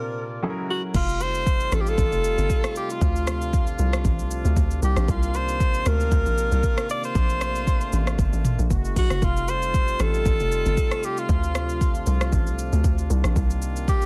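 A swung 116 BPM amapiano groove drops in at 0.9 seconds, with a hollow, bouncy log drum bass and an up-front electronic afro-pop kit of deep kick, metallic hats, rim clicks, shaker, toms and crash under a breathy, vibrato-laden alto saxophone melody with tape echo, as clear classical-style brass chords sustain through soulful harmony and a polished baby grand piano sounds only in the opening second of this dry, densely limited fragment.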